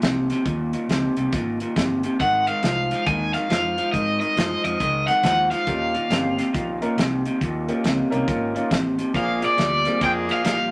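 A slightly broken-up, lo-fi electric guitar riff through a small old amp, with warbly pitch drift, opens this swaggering, soulful electric blues shuffle at 138 BPM in Eb mixolydian alongside a dark, round fingered electric bass and a punchy natural country drum kit, before a bright, overdriven lead guitar with harmonic tremolo takes the melody at 2.2 seconds, a woody upright piano adds long-sustaining accompaniment from 5.7 seconds, and a loose, clear jazz-style horn section lands octave-doubled stabs at 9.1 seconds, all in a moderate studio reverb in this excerpt from a longer piece.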